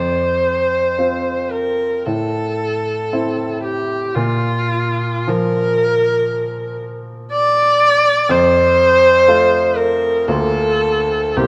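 Captured by close, detailed microphones in a moderate concert-hall reverb, this tender, lyrical romantic classical excerpt of 11.5 seconds moves in a slow, rubato 4/4 at 50 to 62 BPM, with a single rich, expressive bowed viola carrying the melody up front with vibrato, soft attacks and portamento, while a clear, present baby grand piano accompanies from below over chords moving from F5 through Am and Bb to F and Bb/D.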